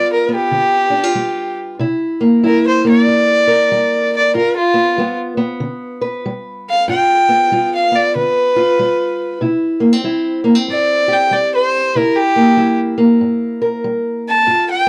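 Acoustic country blues with a swaggering, soulful swing, cut from a longer piece, where a woody, bowed fiddle with light vibrato carries the melody up front over a dark, fingerpicked parlour steel-string guitar, both heard close and dry in a modest booth with a 1970s studio character, moving through G7, C7 and a C#dim7.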